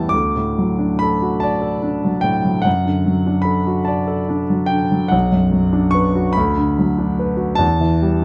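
A clear concert grand piano, placed up front with a natural tone and deep bass, plays alone in this mournful, wistful romantic nocturne, a brief fragment cut from a longer piece. The slow 6/8 pulse moves at 48 BPM in dotted quarters with a rubato feel, opening in D major and turning to B minor at 5.1 s before settling on a rootless C# diminished chord over E. Close, detailed miking and light reverb frame the piano's span from B1 to D6, with the instrument tuned to A4 = 438 Hz.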